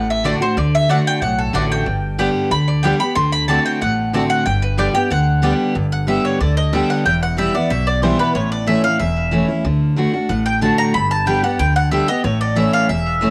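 A lively, rustic bluegrass excerpt opens with a round, up-front mandolin melody over a bright dreadnought guitar with fresh strings and a thumpy, woody gut-string upright bass plucked by hand, while a second double-strung mandolin adds stabs from 0.2 s, treated with plate reverb and tape echo. The melody mandolin drops out at 5.6 s, and a mandolin solo runs from 5.8 s over changes moving through E minor, A, D and G. The mandolins and guitar carry a cassette-tape tint, all within a snug booth ambience of a home cassette recording.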